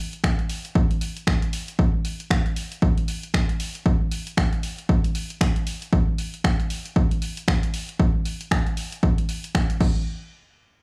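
A swung late-night house groove opens with a layered electronic kit of crash cymbal, finger snaps and warm hi-hats sitting back in studio reverb, joined at 0.2 s by a punchy, tape-warm electronic kick placed up front, all captured with a dry, gritty hardware character in this short cut from a longer piece.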